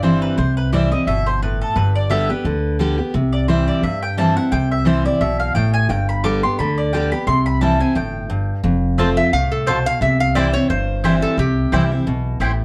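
A swung 4/4 pulse at 175 BPM drives this joyful bluegrass excerpt in C major, where a full-bodied, picked dreadnought guitar with audible finger squeak carries the accompaniment over a growly, thumpy pizzicato upright bass, a woody, double-strung mandolin plays stabs and takes a solo until 8.6 seconds, and a nasal, metallic lap resonator guitar played with slide and fingerpicks brings in the melody at 9.2 seconds, within a dark production with moderate studio reverb.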